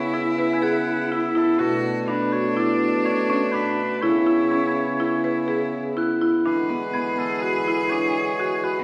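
Set in a straight 5/4 metre, this chamber passage from a longer contemporary instrumental piece feels hypnotic and restless. A woody, buzzing marimba struck with hard mallets sits forward in the mix, playing arpeggios from 0.1 s, while a dark bassoon with a smooth top holds the bass beneath. A warm oboe with light vibrato carries the melody, and a bright, biting cello, bowed by a single player, traces an intense second line under it. A reedy, breathing pedal harmonium sustains mellow, airy chords, and from 0.6 s a close-miked glockenspiel with soft plastic mallets adds metallic, bell-like ringing in the background. The ensemble sounds as if it is playing in a church or concert hall, with a generous recital-hall reverb, and the music moves into a new section at 6.5 s.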